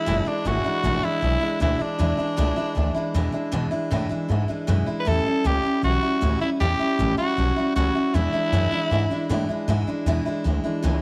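Rockabilly at 156 BPM in E mixolydian, rowdy and upbeat, with a raspy, growling tenor saxophone carrying the melody until 9.7 seconds over full-bodied picked steel-string acoustic guitar and a thumpy, woody pizzicato upright bass, moving from E7 to A7 and back in a small room with light reverb.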